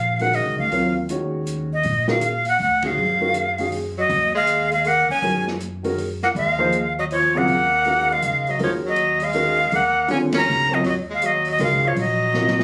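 A breathy, bright flute carries the melody from the opening moment, sitting up front over a woody, thumpy pizzicato upright bass, in this hypnotic, spiritual modal jazz excerpt cut from a longer piece. Almost immediately a warm, natural-sounding baby grand piano fills in the accompaniment, and a dark, smooth acoustic drum kit moves along softly on ride cymbal, hi-hat, snare and a boomy kick. The tune swings in a lilting 3/4 at 160 BPM, hovering on a single Ebm11 chord in Eb dorian, with the flute's tongued, vibrato-laden, almost reedy tone leading throughout. At 4.0 seconds a clear, present tenor saxophone enters with a second line, colored by a light vibrato. The band lands two accents together along the way, and a short drum fill arrives at 12.4 seconds just as the clip ends. Captured on a phone in the room, the sound has a light club reverb and a compressed feel.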